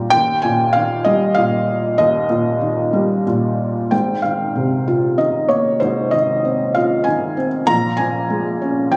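A felt-muted upright piano carries this short, lyrical classical solo, its soft, mellow tone sitting intimate and up front across a range from deep bass to the upper treble. The bittersweet, brooding mood unfolds in a rubato triple metre, moving from an opening on Eb into a second passage at 3.9 seconds that colours the harmony with Ab69 and then Bbm7. Captured on a phone in the room with light club reverb and compression, the fragment is cut from a longer piece.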